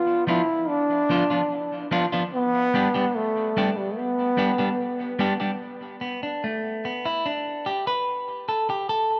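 Hypnotic and laid-back, this reggae excerpt opens with an intimate, breathy trombone carrying a mellow, vibrato-tinged melody over Bdim and G chords until 5.2 seconds, while an up-front, clean semi-hollow guitar picks the accompaniment from 0.3 seconds and then takes a solo from 5.6 seconds as the harmony drops away, with both parts treated with tape echo inside a moderate echo-chamber reverb.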